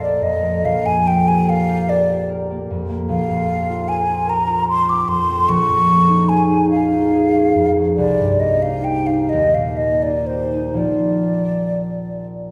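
Flute and concert harp begin together in this pastoral, luminous fragment of an impressionist classical duo, moving in a slow, rubato 6/8 at roughly 40-51 BPM in Bb mixolydian. The airy, hollow flute carries the melody with gentle vibrato and soft attacks, while the thumb-plucked, ringing harp spreads a low-to-middle accompaniment through chords such as Gm7/Bb, Db69/Bb and Cm7, settling on Bbadd9 near 10.8 seconds. Both instruments sit up front, yet the recital hall's lush reverb places the listener further back in the room.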